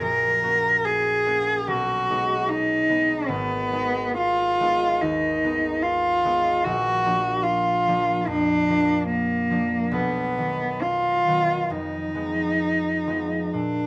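A light reverb surrounds this short fragment of a romantic classical duo for cello and harp, which sounds solemn and melancholic throughout its 13.9 seconds. The bowed cello sits up front and carries the melody with a rich, expressive tone, using vibrato and portamento as it moves between Bb3 and A#4. Beneath it, a concert harp plays a fingerpicked acoustic accompaniment, quieter in the mix, its ringing strings reaching down to Ab1 and up to F#4. The pulse is elastic, with the two players stretching time in a rubato feel over a slow 4/4, and both parts sound from start to finish. The harmony drifts from F#/A# through B6, Abm, Bb and B before settling toward Fm7b5, while the tuning sits slightly high at A4 = 445 Hz.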